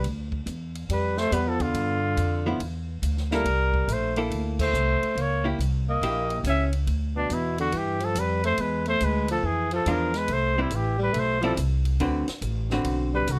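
Swinging at 141 BPM in 4/4 with a playful small-group bop feel in G mixolydian, this brief cut from a longer piece sets a warm, lightly vibratoed trumpet melody with scooped notes up front over a raspy, growling tenor saxophone second line, a woody, pizzicato upright bass, and a compact cocktail kit with dark cymbals, a high-tuned snare and punchy kick, while a clean, compressed hollow-body archtop guitar comps from 1.3 to 6.7 seconds and again from 9.9 seconds, the band hitting an accent at 4.5 seconds, all captured dry and close.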